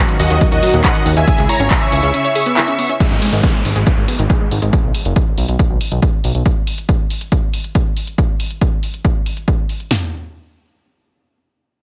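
This uplifting trance excerpt in G# minor opens at a drop. A rich studio string section holds sustained chords in the background, and a round, warbling analog pluck plays arpeggios through chorus and tape echo, both pumping under sidechain compression. Almost at once a huge, airy supersaw takes the melody with vibrato and tape echo, joined by a very quiet grand piano second line. Meanwhile a fat, nasal analog bass sits up front and a grainy egg shaker adds percussion. Two punchy analog drum machine parts, both re-recorded in a large room, drive the straight 139 BPM 4/4 pulse: one supplies kick, snare, toms and hi-hat, and the other adds crash cymbal, handclaps and low-pass filtered hats. At 3.0 seconds the strings and supersaw stop, the harmony shifts to G# minor, and a filter sweep moves over the pluck as an electronic downlifter enters. The mood is soaring yet bittersweet, and the sound is dry, with little reverb.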